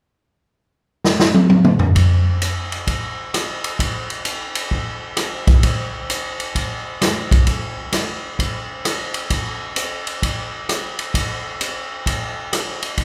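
A swung eighth-note pulse in 4/4 drives this jazz excerpt, cut from a longer piece, with a dramatic, brassy mood. The only part is a swinging big-band drum kit, which enters at 1.0 s with a fill lasting until 2.0 s, then settles into the groove and plays on to 13.0 s. Its acoustic, natural sound sits up front, with a punchy kick, a medium-tuned snare, hi-hat, ride cymbal, rim clicks and toms. The kit carries a moderate recital-hall reverb, lending the performance the airy resonance of a church or concert hall.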